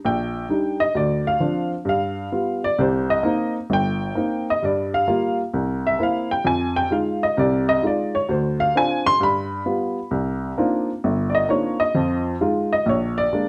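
A woody, slightly detuned upright piano with short sustain plays alone and up front for the full 13.5 seconds of this relaxed solo jazz fragment, swinging at 131 BPM in 4/4 across a range from G1 to C6 through changes that open on Ebmaj7 and close on Bb7, all set in a dark, warm production with light reverb.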